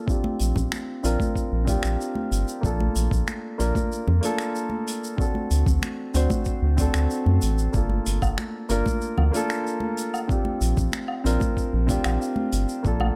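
A smooth sunset chillout excerpt at 94 BPM opens on an up-front concert grand piano with a deep low end, treated with a low-pass filter sweep and analog delay, joined at once by a thumpy, overdriven electronic kick, a brushed jazz kit with finger snaps, hi-hat, shaker and woodblock, and bright, hard-handed congas in the background, before a round, dark analog bass enters up front at 0.4 seconds beneath a Bb69, Bbmaj7, D7 and Gm9 progression, all captured in a dry, gritty recording.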